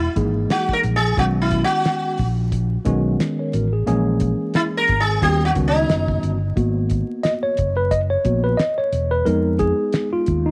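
Smoky and nocturnal, this short jazz-hop cut from a longer hip hop piece moves with a swung, unhurried 4/4 feel over rich extended harmony. A bright, buzzing sitar, plucked with a plectrum and shimmering with sympathetic strings, takes the opening solo up front before falling away at 6.3 seconds. From 6.6 seconds the worn, slightly out-of-tune tine electric piano carries the solo, its mellow, clean and direct tone sitting forward in the mix after comping beneath the sitar. The fretless electric bass anchors the low end with a round, amped sound, while the cloth-damped drum kit thuds along on kick, snare and hi-hat, dry and dark with a fat snare, tight kick and rolled-off top. Light reverb, a studio ambience and a layer of vinyl crackle give the whole excerpt a dusty, late-night atmosphere.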